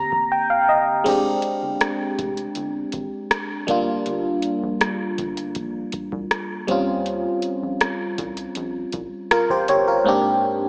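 Soaked in a long plate reverb and colored by cassette tape and a small-speaker sound, this dreamy fragment of contemporary R&B feels moody and full of longing. It moves at 80 BPM in a straight 4/4, in F dorian. A glassy, bell-like FM electric piano sits up front, treated with chorus and phaser, its notes striking fast and decaying; it opens with a brief fill, followed by a silent gap from 0.3 to 1.1 seconds. A booming analog drum machine, also up front, brings a deep kick, metallic hi-hats, rim clicks and a crash cymbal with a warm character. Underneath, a rubbery, hollow square bass with a dark filter pluck stays in the background. The harmony drifts from a rootless Abmaj9#11 through Fm69, Gm7 and Eb13 before returning to Abmaj9#11 at 10.1 seconds.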